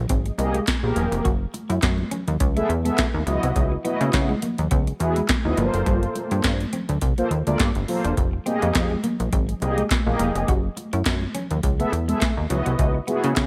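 A punchy, sawtooth-edged analog bass opens this slick, danceable early-eighties boogie funk excerpt at 104 BPM with a light 16th-note swing, joined almost at once by a booming drum machine with a deep kick, crisp snare, metallic hats and handclaps in gated reverb, a dark, slightly broken-up electric guitar riff with subtle chorus tucked in the background, and faint, distant high-tuned congas, while from 0.3 s a round, detuned synth brass with chorus and vibrato sustains over minor-eleventh chords such as Fm11 and Gbm11 in a dry, close mix.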